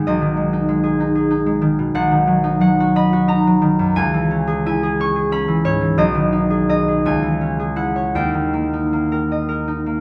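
Flowing in a lilting 6/8 with a freely breathing rubato, this classical solo harp piece has a gentle, wistful mood. The concert harp is the only voice, fingerpicked and held up front, its ringing acoustic tone spanning from B1 to C#6 across the full 10 seconds. The harmony drifts from G#m/B to B and C#m, returns to G#m/B and C#m, and arrives at D# at 8.2 seconds. Tuned to A4 = 435 Hz, the instrument sits in a moderate stone-room reverb with a 1.2-second decay, and the dark, warm production suits its plucked strings. This short passage is cut from a longer work.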